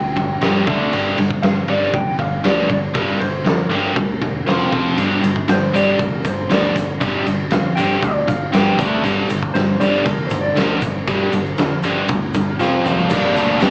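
Garage rock in G minor at 118 BPM, this raw, swaggering excerpt heard as a live gig through a club PA on cassette pairs a biting, double-tracked overdriven guitar riff and a dark, slightly broken-up slide guitar melody, both with slapback echo, over a round hollow-body bass and an oversized low-tuned drum kit with a fat snare, punchy kick and dark cymbals that enters at 0.2 seconds, while a grainy tube shaker joins distantly at 5.0 seconds before a drum fill at 12.6 seconds.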